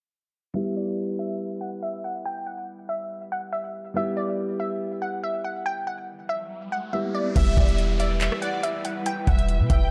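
A half-time trap pulse at 141 BPM in 4/4 drives this hard-hitting, menacing hip hop piece in E minor, cut from a longer work and sitting on a lone E minor chord. It opens with a dark, boxy concert grand piano holding long, mellow accompaniment beneath a crystalline wavetable pluck that carries the melody up front, its noise-flecked tone thickened by chorus and tape echo while a filter sweep runs from 0.6 to 7.4 seconds. An electronic riser builds from 6.4 seconds, and at 7.4 seconds the track drops into its heavier second half: a trap kit with a knocking kick, metallic hats, handclaps, rim clicks and a crash cymbal lands beside a deep, boomy sine 808 whose clean notes hit fast and decay. A lush, vibrato-rich violin section joins as a second line at the same time, sitting in the pluck's register through tape echo, and an ethereal FM pad swells in with slow-attack sustained chords, ensemble chorus and its own reverb. 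The drums and 808 dominate a dark, warm digital ambience.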